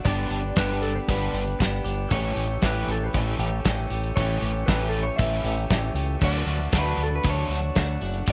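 Light studio reverb gives this brief cut from a longer indie rock piece a jangly, carefree sound, moving at 117 BPM in straight 4/4 in D major over Gmaj7, A7 and Dmaj7. A loose kit with dark cymbals, a fat snare and a tight kick sits up front in a small room beside a round, growling, overdriven fingered bass. A bright overdriven guitar riff is joined at 0.1 s by a thick fuzz guitar riff soaked in chorus and tape echo, while a slightly broken-up guitar through a small old amp carries the tape-echoed melody over very quiet reedy combo organ chords and a jingly, close tambourine.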